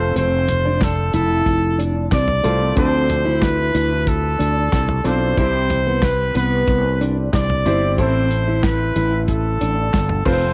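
This excerpt of dramatic, bittersweet piano-driven pop opens with a clear trumpet carrying the melody up front with vibrato, over a brilliant concert grand piano set in the background and a growly, punchy fretless electric bass sustaining beneath them. At 0.2 seconds a fingerpicked jumbo steel-string acoustic guitar joins with a full-bodied riff, alongside a damped 70s drum kit that sounds dry and tight, with dark cymbals, a medium-tuned snare, hi-hat, toms, crash, kick and handclaps. A jingly tambourine enters close in the background at 0.8 seconds. The music moves at a steady 92 BPM in 4/4 in A minor, passing through F, Dm7, Cmaj7 and Amadd9. The trumpet, piano, guitar and drums carry a cassette tape coloring, and the home cassette recording has light reverb and studio ambience, with its top end capped at 10.9 kHz.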